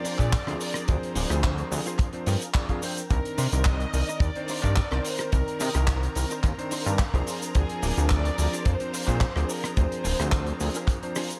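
A glossy, nasal synth bass sits up front in this sensual, cosmic nu-disco excerpt, its pulse-wave and sawtooth tone animated by pulse-width modulation, shaped by a filter pluck and thickened with chorus, entering at 0.2 seconds alongside a tight, dry kick drum. A damped 70s drum kit with a rolled-off top adds handclaps, hi-hat, rim click and shaker in a small room, while a vintage electric grand piano with a clangy low end carries sidechain pumping and slapback echo. In the background, a bright, twangy clean guitar recorded direct plays a compressed, picked riff through ensemble chorus and slapback, slipping in a short fill from 2.3 to 3.1 seconds. Above it, a distant, lush symphonic violin section carries the melody with smooth vibrato and tape echo, while a very quiet, focused studio string section holds bowed chords. The harmony moves from Dm7b5 to Cm9 and back over a straight 4/4 groove, cut from a longer piece.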